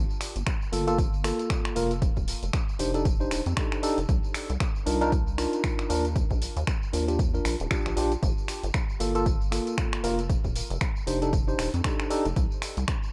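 Moody, late-night deep house with a swung shuffle, where a rubbery, wave-folded square bass with tube saturation pumps beneath tine electric piano stabs that ring through a combo amp with dub echo, while a punchy analog drum machine supplies finger snaps, hi-hat and tambourine over an up-front electronic kick, the whole cut from a longer piece in a light, echo-heavy digital ambience that moves through Gm9, F13, Cm11 and Ebmaj9 before the chords drop out at 12.4 seconds.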